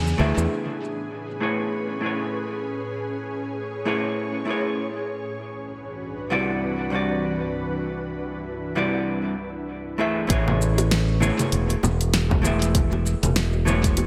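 A dark, clean hollow-body jazz guitar sits up front through this blissful, smooth sunset chillout excerpt at 98 BPM in A major, drifting over an ethereal, airy pad with chorus until 10.3 s. After a brief band accent at the very start, the bright fingered electric bass, tape-echoed deep house kit with fat snare, and very quiet, dry congas and bongos return at 10.3 s, joined by a deep electronic kick, all set in an echo-heavy mix with plate reverb.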